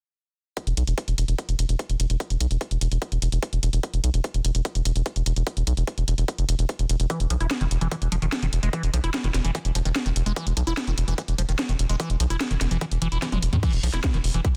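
A dense, heavily limited modern master sits in a digital ambience, giving this intense, psychedelic trance excerpt a compact, forceful sound. At 147 BPM in a straight 4/4 and in E major, the drums arrive at 0.6 s: a tight, up-front electronic kick with a high-pass filter and studio reverb, layered with a produced drum-and-bass kit of crash cymbal, hi-hat, cracking snare and toms, also in studio reverb. Beneath them, a round analog bass holds a deep, dark register between E1 and E2, its square and sine tones combining a fast attack with a sustained body over an E5 harmony. From 7.1 s a liquid acid bass riff joins, squelchy yet smooth and resonant, with filter sweeps, a phaser, sidechain pumping and digital delay, ranging from D#3 to E4. A drum fill at 13.2 s closes the section before the fragment cuts off.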